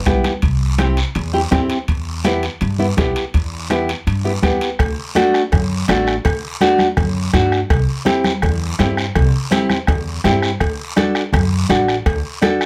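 A full-bodied, fingerpicked nylon-string guitar with audible finger squeak and a woody, thumpy gut-string upright bass sit up front from the first moment, alongside a soft-beater bombo, thick-skinned vintage congas, a raspy guiro and ringing metal-shell timbales and cowbell in this passionate, driving cumbia at 165 BPM, which moves from C and Em into a second section at 4.8 seconds that shifts between D and C, captured through close, detailed microphones with light reverb as a cut from a longer piece.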